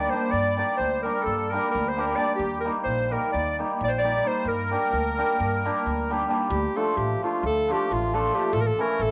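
Heard through a homemade cassette recording with light reverb and small-room ambience, this bittersweet, restless Balkan folk fragment in 9/8 features a warm, smooth-topped, classical-style clarinet with a cassette-tape colour leading up front over a shimmering, ringing, hammered cimbalom, while a reedy, slowly beating accordion second line drops out at 6.1 seconds just before the music moves into a new section at 6.5 seconds, all over a woody pizzicato upright bass on steel strings.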